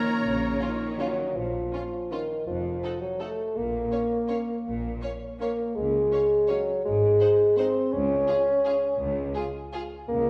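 Bittersweet and dark, this classical excerpt in Bb minor moves at 164 BPM in a rubato 3/4, opening with a brief gesture from pure flutes, a clear oboe and sustained chords from mellow French horns and very quiet trombones that fall away by 1.2 seconds, while a distant violin section carries the melody in the background over a lush viola accompaniment, a smooth second violin line, focused cellos and even double basses, joined at 1.0 seconds by an up-front, soft-attacked solo bassoon, the ensemble heard in a reverberant recital hall.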